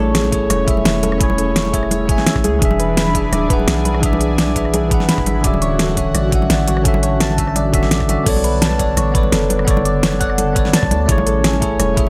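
A bell-like tine electric piano sits up front in this dreamy, lush liquid drum and bass excerpt, its bright, clean accompaniment trailed by delay over a progression that moves from Amaj7 through E7, Dmaj9 and Bm9 before returning home. Beneath it, a long sustained 808-style bass holds deep, sine-toned notes with a fast attack and mellow decay. A harp-like synth pluck ripples through arpeggios with chorus and delay, while an airy, breathy pad rests in the background, its detuned sustained chords pumping against the sidechain. The produced, layered pop drum kit comes forward with a fat snare, crisp hats, rim clicks and crash, joined from 0.3 seconds by a knocking electronic kick with a tape-tinged glow. Close, dry congas ring quietly behind it all, and a light reverb gives the whole a soft, spacious sheen.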